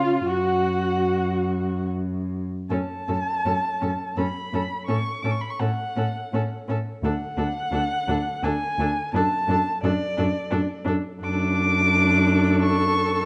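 In a rubato 3/4 that moves between 73 and 88 BPM, this slow romantic movement for string quartet in F# minor unfolds tenderly and serenely, cut from a longer piece. Four muted, bowed players sound throughout the 13.3 seconds: a first violin sings the melody up front between D5 and D6, with vibrato, portamento and a smooth top, while a second violin traces a quieter inner line with its own vibrato and slides. A distant viola gives soft-attacked accompaniment with vibrato and portamento, and the cello, also up front, anchors the bass with light vibrato. Each instrument plays con sordino, giving the quartet a veiled, shadowed color. After an unharmonized opening, the harmony settles on F# minor at 2.7 seconds, passes through F#m/A, and then warms toward D and D/F#. A moderate recital-hall reverb and a dark production wrap the strings in gentle, intimate space.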